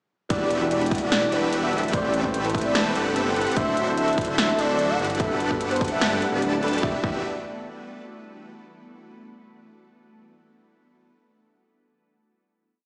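A dreamy, bittersweet future bass piece in E minor at 147 BPM opens at 0.3 s straight into the drop. Huge detuned supersaw chords throb in tempo up front over a hard-clipped electronic kick and a half-time beat of punchy snare and metallic hats with hat rolls. Beneath them a thick, saturated detuned saw bass plays long gliding notes, pumping with the sidechain along with the chords, while a velvety synth lead with chorus, vibrato and dub echo repeats a riff melody. A boxy grand piano sits in the background holding spread chords with syncopated pushes through a digital delay, and a very quiet fingerpicked concert harp rings out a six-step arpeggio loop that drifts against the bar. An ethereal, warbling pad joins faintly at 1.3 s, sustaining the Em9, Am9, D9 and Gmaj9 progression until the drop gives way at 6.8 s to a final Em9 chord, and the track sounds as if played on a big system in a bare stone room, with a lush hall reverb and a small-speaker tone.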